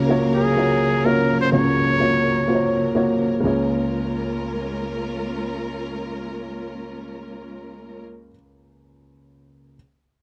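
A light reverb gives this short pop excerpt a subtle sense of space, with the piano and trumpet placed up front. It moves at 126 BPM in a straight 4/4 in D-flat major, and the mood is warm and hopeful. A dark, mellow upright piano with a woody, vintage tone carries the accompaniment from the start to 9.8 seconds, spanning Db2 to Db5. Alongside it, a lush studio string section holds bowed, expressive chords with vibrato and a smooth top until 8.0 seconds. A bright, close-miked solo trumpet plays a short pop-style melody between Ab4 and Db5 with light vibrato, finishing at 2.9 seconds. The harmony opens on Gbmaj7/Db and moves to Db6.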